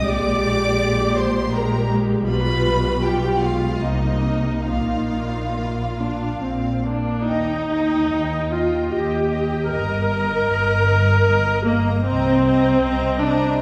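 In a rubato 3/4 pulse moving at 69-82 BPM, this elegiac, yearning slow romantic movement for string orchestra in Eb major, cut from a longer piece, sets a rich, focused first violin section singing the high melody over a lush, distant second violin line with soft attacks and expressive portamento, clear up-front violas carrying the accompaniment, warm cellos sitting in the background, and close, vibrato-laden double basses anchoring the bass, all bowed and heard from further back in a wet concert hall whose reverb surrounds the ensemble, with the music moving into its second section at 7.3 seconds.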